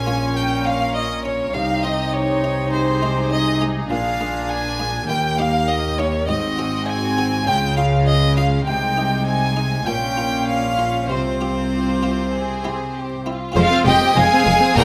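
Driving and dramatic, this cut from a longer baroque-style concerto movement in F minor moves at 101 BPM in a straight 4/4. A clear, intense solo violin sits up front with vibrato, though it sounds distant, while a rich, focused chamber violin section and a lush, portamento-inflected studio violin section carry melody and second line in the background. Beneath them, a smooth-topped viola section, an even cello section and a close, expressive double bass section fill out the harmony and bass, with a very quiet, dry, lute-like buff-stop harpsichord adding muted plucked accompaniment, all in a moderate recital hall reverb as the chords move through Bb7 and Db to a C that resolves to F minor at 13.6 seconds.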